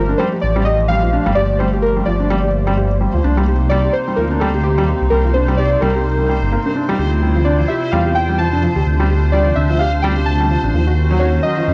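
Intricate and melancholic, this short IDM passage in G minor moves at 128 BPM with a light swing on the sixteenths, cut from a longer piece and tuned slightly flat. Warbly lo-fi synth keys carry the melody, their detuned triangle and sawtooth tone mellow and nostalgic, with a filter sweep, chorus and tape echo. Beneath them a warbling, vintage pad holds slow-blooming chords with chorus and built-in reverb, while a felt-muted upright piano enters at 0.1 seconds with soft, intimate arpeggios, its action noise audible and its short notes trailed by tape echo. A dark detuned saw bass sits up front with a deep, rumbling, beating unison tone, and high above, a faint bubbling texture steps randomly through a resonant, bright filter. The harmony drifts from Gm9 through Cm9 and Dm9 to Ebm7 at 10.7 seconds, all captured in a dry, gritty cassette-tape sound.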